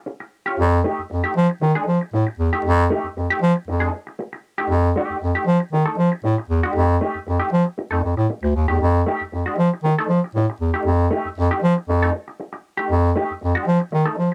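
A mellow, clean electric guitar opens at 0.1 s on a rootless Eb9 chord, its dark, compressed tone shaped by a wah effect and played fingered in a range from A3 to A4. At 0.6 s a bass clarinet joins on the bass line and the harmony settles onto F9. The clarinet is close-miked and sits up front, with a warm, classical-style sound moving between D2 and F3, and it stands louder in the balance than the guitar. This energetic, funky groove in F mixolydian runs at 117 BPM in a straight 4/4 feel, with the guitar, also up front, supplying accompaniment. The room has little reverb, and the passage is cut from a longer piece, ending at 14.3 s.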